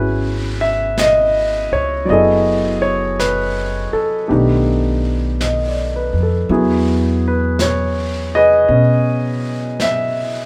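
A lightly reverberant live-room sound frames this short slice of a slow jazz ballad, cut from a longer piece, at 54 BPM with a lilting swing on the eighth notes. The mood is intimate and wistful. A concert grand piano sits up front in accompaniment, its tone rich with deep bass as it moves through C#m7, F#m9, B7alt and E6. Beneath it, a pizzicato upright bass on gut strings gives a woody, thumpy foundation. A jazz brush kit enters at 1.0 seconds, playing brushed snare and hi-hat quietly in the background with a dark, smooth, rolled-off character.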